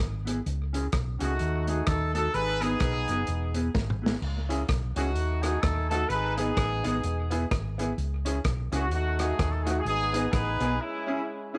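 A round, amped hollow-body electric bass opens this energetic ska excerpt in C# minor at 128 BPM with a swung feel, joined almost at once by a gritty, saturated breakbeat kit with tape echo and a mellow, clean guitar tucked in the background. A tight horn section carries the melody from 1.2 seconds, its clear, distant tone touched with light vibrato and tape echo, while a worn, woody upright piano adds background stabs from 4.5 seconds over a cycling C#m, D#dim, G#m and E progression. After a drum fill, the driving groove runs on until a break at 10.8 seconds, where guitar, horns and piano carry on briefly.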